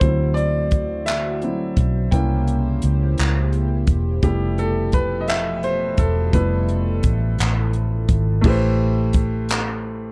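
This sultry, late-night R&B piece moves in a slow 6/8 at 57 BPM, counted in dotted quarters with a straight feel. A compact cocktail drum kit sits up front with a punchy kick, dark cymbals, hi-hat, handclaps and a crash, sounding acoustic and dry until 9.7 seconds. Beneath it, a vintage muted fingered electric bass gives a round, foam-muted, amped tone that is dark and punchy, holding the low end from E1 to D2. A warm concert grand piano with natural, deep lows takes a solo through the first 8.4 seconds over chords moving from D9 through C7b9 to Fmaj9#11, while a chorused pulse-width pad adds shimmering, retro sustained chords with a slow attack and an evolving, ring-modulated character before it stops at 8.4 seconds. The harmony then settles on Am9 as the piano, bass and drums carry on in a close, dry 1970s-style studio sound with little reverb, and this short passage is cut from a longer piece.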